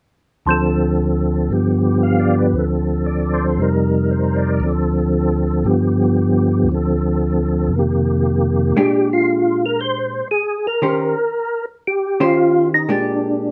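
Jazz with a soulful, bluesy mood, this short cut from a longer piece swings its eighth notes at 116 BPM in 4/4. A percussive tonewheel organ carries the melody from 0.5 seconds, its mellow, round tone shaded by third harmonic percussion, chorus vibrato and a slow rotary speaker, and it sits up front in the mix. The opening stretch circles between Dm7, G7 and F9sus4, giving the organ a blues-tinged groove to ride over. At 8.8 seconds the harmony shifts to Bb13 and Eb13 before settling on Bb6, and a vintage hollow-body jazz guitar enters in accompaniment, its electric, picked sound dark, clean and compressed. Both parts stay close and present, wrapped in a light reverb that keeps the sound intimate.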